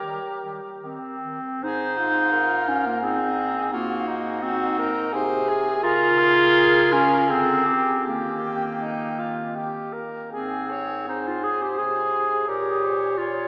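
Classical and lyrical, this 13.5-second excerpt for single-reed quartet moves in a rubato 3/4 at roughly 75-88 BPM in Ab major. A clear, close-miked soprano saxophone sings the melody with vibrato and a soft attack, while a warm alto saxophone with vibrato traces a distant second line. A mellow clarinet sits up front with the accompaniment, and a roomy bass clarinet anchors the bass. The harmony passes through Ab7, Db and a colourful Abmaj7#11/D, then moves through Eb and Ab to a rootless Eb7/Bb. Everything is bathed in a long, wet cathedral reverb with a small-speaker sound.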